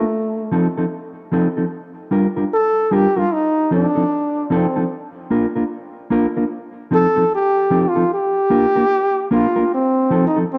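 A vibrato-rich, punchy trombone solo with a smooth top sings up front over a mellow, clean, fingered electric guitar from the start of this uplifting, warm reggae excerpt at 75 BPM in F mixolydian, its swung sixteenths moving through F7, Gm7 and Bb chords in a dark production with moderate spring reverb and a small room.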